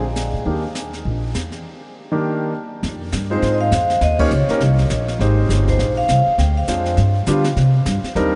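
Washed in a huge, echoing reverb with a softened top end, this playful small-group swing and bop clip in Eb major moves at a brisk 203 BPM in 4/4 with a swung eighth-note feel. The intimate grand piano, its action noise audible, comps up front beside a woody, growly pizzicato upright bass, while a brushed kit with dark cymbals, a high-tuned snare and a boomy kick sits lower in the mix. A ringing vibraphone with its motor off carries the melody from 3.3 to 7.0 seconds, the band hits an accent at 4.2 seconds, and the harmony travels from Ebmaj7 through Abmaj7 and G7 to a closing Cm9.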